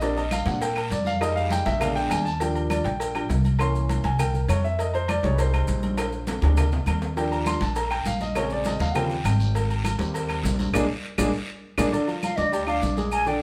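A live-room sound with moderate large-studio reverb frames this sunny, danceable stretch of Afro-Cuban jazz in Eb major at 202 BPM, cut from a longer piece, where an intimate concert grand with audible action noise and deep bass takes a solo over a growly, up-front pizzicato upright bass. Thick-skinned congas, ringing saturated agogo bells and timbales, a round low cowbell, woody claves, grainy maracas and a raspy guiro fill out the percussion, with drum fills at 6.0 and 11.0 seconds and a band accent closing the piano's turn on a Bb7 chord. At 12.2 seconds a distant, hollow, breathy flute takes over the solo for the final moments.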